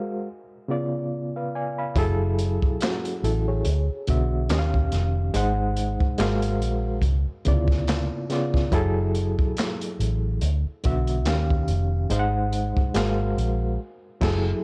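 An overdriven reed electric piano opens alone, its reedy, gritty tone shimmering with fast tremolo through a combo amp as it sets a sultry, soulful neo-soul mood at a slow 71 BPM with a lilting sixteenth-note swing. At 2.0 seconds a vintage muted fingered electric bass and a crunchy breakbeat drum kit join, the bass round, punchy and foam-muted, sitting up front in the low register. The kit brings kick, snare, hi-hat, handclaps and crash cymbal, with a tight kick, medium-tuned snare, dark cymbals and a saturated, rolled-off top that gives it a gritty, warm edge. The harmony cycles through rich, jazzy R&B chords such as C#7b9, F#m9, D69 and G#13, lending the groove a moody, searching color. The production is dark and warm, with studio ambience around the parts, and the passage closes on a band accent at 13.8 seconds as it breaks off from the longer piece.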